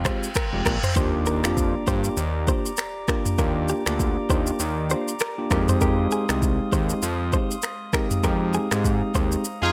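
A digital ambience frames this short, sultry afrobeats fragment, with an electronic, produced drum kit up front whose deep kick sits among finger snaps, rim clicks, shaker and toms in a gently swung 16th-note feel. It opens with a reverse cymbal rising into an electronic impact at 1.0 seconds. A fat, detuned sawtooth analog bass with a filter sweep and fast attack holds the low end just as prominently. Over the chords Fmadd9, Ebmaj7 and Fm7, a clean tine electric piano plays accompaniment as if through built-in speakers, while a glassy, ethereal glass harmonica sustains slow-attack chords with a faint beating shimmer. Further back, a picked, compressed electric guitar recorded direct repeats a short riff coloured by spring reverb and tape echo. The band hits an accent from 8.2 seconds, and a clear, punchy pop-style horn section with light vibrato bursts in loosely at 9.6 seconds as the mellow groove is cut off.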